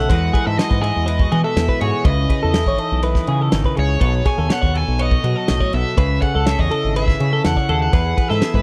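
A straight, loose 4/4 pulse from a small-room indie drum kit with a fat snare, tight kick and ride cymbal drives this playful, wistful math rock and midwest emo fragment, where two bright, twangy twelve-string electric guitars (one carrying picked chordal accompaniment, the other picking arpeggios through spring reverb) move through a cycle of ninth chords beneath a picked, overdriven electric guitar melody, all anchored by a growling, punchy fingered bass with overdrive in a dry, close 1970s-style studio sound.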